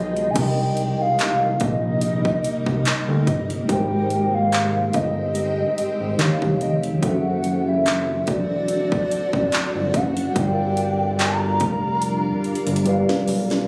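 Captured on a phone in the room, this short cut from a longer contemporary R&B piece carries a club-style reverb and compression over a digital ambience. At 72 BPM in 4/4, with a light sixteenth-note swing in C minor, the mood is moody and sensual as the harmony moves from Cm7 through Abmaj7, Eb9 and D7 to Gm7 and G7. A hollow, woody, clarinet-like synth lead carries the melody with chorus, digital delay and a warbling vibrato. Beneath it sit a mellow tine electric piano, heard as if through its built-in speakers, and a cloudy granular pad that pumps against the sidechain inside its own reverb. A fat analog bass with a saturated, wave-folded edge anchors the low end, while an up-front trap kit enters at 0.2 seconds: hard-clipped kick, sharp snare, metallic hats, handclaps and crash, re-recorded in a large room, closing with a fill from 12.0 seconds. A very quiet, bell-like celesta adds delicate touches from 7.9 to 12.3 seconds.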